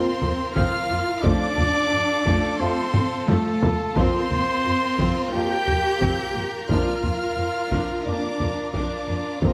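A cinematic, epic orchestral film-score passage at 88 BPM in 4/4, heroic and adventurous in mood, cut from a longer piece and moving through Fsus4, Dm/F and Bb/F harmony. A dark, expressive violin section carries the high melody over a smooth, even second violin line, with a lush cello section on the bass, a woody double bass section and a background viola section entering at 0.2 s, while a mellow French horn section in the background and a very quiet, clear trombone section hold sustained chords. Up front, a vintage-toned solo trumpet plays stabs, and a band-limited taiko ensemble struck with hard sticks drives the rhythm with a fill from 2.9 to 4.0 s, all set in a moderate scoring-stage reverb.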